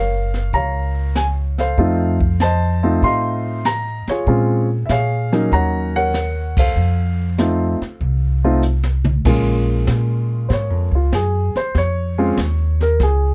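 A swinging groove in four drives this cool jazz piano trio, which is cut from a longer piece. The pizzicato upright bass sits up front with a woody, steel-strung tone. The brushed drum kit joins at 0.3 seconds, with a high-tuned snare and punchy kick kept smooth and rolled-off at the top, as if played in a small room. The baby grand piano carries the melody in a mellow, natural voice over Gbmaj7, F7, Bbm7 and Ebm7 harmony. After a shared band accent and a drum fill at 8.6 seconds, the piano takes a solo from 9.3 seconds over Bbm7. The production is dry, with little reverb and a dark, warm character overall.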